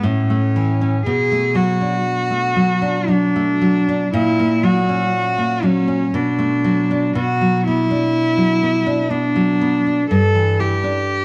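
The rhythm moves in a slow 3/4 at 60 BPM, with uneven beats and a rubato feel that lets the time breathe. This serene, lyrical romantic duo pairs cello and classical guitar, tuned to A4 = 436 Hz, and is cut from a longer piece. Both instruments play together from the first moment to 11.2 seconds. The bowed cello carries the melody in a clear, smooth tone with vibrato and an even line between C#4 and A4, while the fingerpicked nylon-string guitar supplies warm acoustic accompaniment from G2 to E4. Both instruments sit up front, and the harmony passes from A through Bm7 and F#/A#, returns to Bm7, then moves to Bm and finally Em7/G. A moderate recital hall reverb surrounds the pair, giving the dark production a gentle sense of space.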